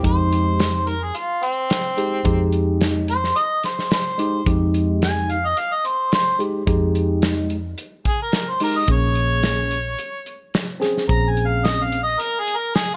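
A roomy harmonica with light vibrato and scooped notes carries a mournful jazz-style solo throughout this soulful straight-eighth soul blues excerpt in F minor at 109 BPM. It is backed by a barky, clean tine electric piano through a phaser, a dark, round, foam-muted fingered electric bass, and a small-room soul drum kit of hi-hat, tight kick and medium-tuned snare, as the harmony moves from Fm7 to Bbm7 at 8.9 seconds.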